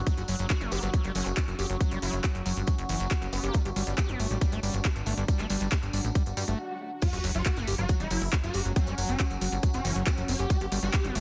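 Psychedelic trance at 138 BPM, hypnotic and alien, built on an up-front overdriven kick, a crisp-hatted dance kit with handclaps and crash, a background tambourine, and a punchy, funky plucked analog bass, while a squelchy, screaming acid line with distortion, chorus and digital delay drives the riff over a very quiet overtone-sweeping drone and a deep, moody ambient pad. A nasal vowel-sweep wobble bass surfaces in the background from 0.7 to 3.6 seconds, and a swell with a sub drop and a brief stop at 6.6 seconds set up the drop at 7.0 seconds. There a swarming, bright, detuned rave lead with phaser and delay takes the melody, all within a dense, heavily limited mix cut from a longer piece.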